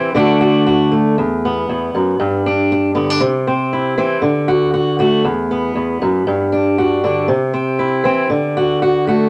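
Danceable and warm, this short highlife excerpt, cut from a longer piece, features a single fingerpicked acoustic guitar playing solo for its full 9.3 seconds. The guitar has a boxy body and sits up front, with the squeak of fingers on strings audible. Its swing-style picking carries a light lilt in 4/4, spanning from low bass notes up into the middle register. The harmony circles through D, E5, G and C, returning to D at the close. A small, wet room adds a short, intimate ambience around the instrument.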